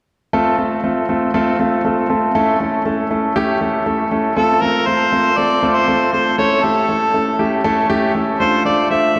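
Driving and nocturnal, this synth-pop excerpt moves at 119 BPM in a straight 4/4, cut from a longer piece. A warm concert grand piano opens at 0.3 seconds as the accompaniment, playing alone at first, up front and intimate, with deep bass, long sustain, a polished presence and audible action noise. At 4.4 seconds a mellow harmonica enters to carry the melody, vintage and pop-styled, with scooped notes and a digital delay trailing its solo line. The harmony moves between F and A before settling on D minor near the close, and both parts run until 9.2 seconds. A lush concert hall reverb with a long tail surrounds the performance, lending the night-time mood a spacious glow.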